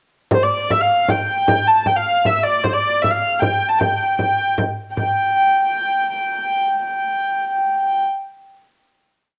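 A straight 3/4 pulse at 155 BPM drives this short, complete medieval dance, which feels ancient and festive and is tuned slightly sharp to A4 = 441 Hz. A single wheel-bowed, keyed hurdy-gurdy carries the modal melody from 0.3 s, ornamenting its line between C5 and A5 with a dark, woody tone and a smooth top. The hurdy-gurdy part also carries a cassette-tape colouring. Alongside it, a small frame drum played with soft hands keeps an evenly spread pattern, its bright acoustic sound close and dry. Both parts sit up front in a home recording on cassette, framed by moderate spring reverb and a small room ambience. The hurdy-gurdy reaches its final note at 5.0 s and holds it until 7.3 s, the drum drops out at 5.1 s, and the hurdy-gurdy part ends at 8.0 s.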